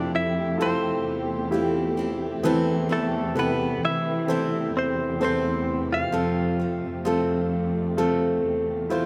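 A slow, straight 4/4 pulse at 65 BPM carries this short pop fragment, cut from a longer piece, with a heartbroken, longing mood. A bright, twangy clean electric guitar, recorded direct and compressed, sits up front with the picked melody and stops at 8.9 seconds. Beneath it, a natural-sounding baby grand piano plays the accompaniment while a picked steel-string acoustic guitar, warm with an auditorium sense of space, spells out arpeggios. A dark, intimate chamber cello section holds the bass close and up front, bowed with vibrato and a soft attack. In the background, a lush, woody studio string section sustains bowed chords with a smooth top, moving from Fmaj7 to Amadd9/E and back to Fmaj7 under light studio reverb in a rough home-demo mix.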